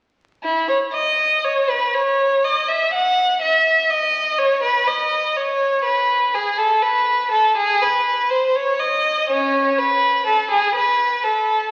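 A flowing triple metre, pulled freely by rubato, carries this serene, baroque-style classical suite movement for unaccompanied violin, cut from a longer piece and tuned a touch below standard pitch. One bowed violin, rich and focused with vibrato, sits up front and plays alone from 0.4 to 11.7 seconds, ranging from C#4 to F#5. A lush recital-hall reverb surrounds it, and the crackle of a very old 78 rpm record gives the sound an antique patina.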